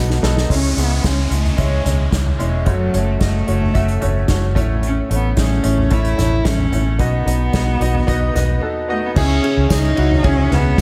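Anthemic and uplifting, this short cut from a longer piano-driven pop piece moves at 111 BPM in a straight 4/4. A clear, polished baby grand piano carries the accompaniment with an analog chorus, while a single bowed cello, expressive and distant with vibrato and portamento, sings the melody through an analog delay. Underneath, a dark, round, foam-muted electric bass sits up front, and an acoustic kit played with bundle sticks in a small room adds a tight kick and a medium-tuned snare alongside hi-hat, ride, crash and toms. The drums open with a fill before the chords begin cycling through C#m, F#m, A and B, with an electronic downlifter and swell sounding from 0.5 to 8.6 seconds. After a brief break at 8.6 seconds, a new section arrives at 9.2 seconds, and a jingly tambourine joins quietly at 9.7 seconds, all set in light reverb.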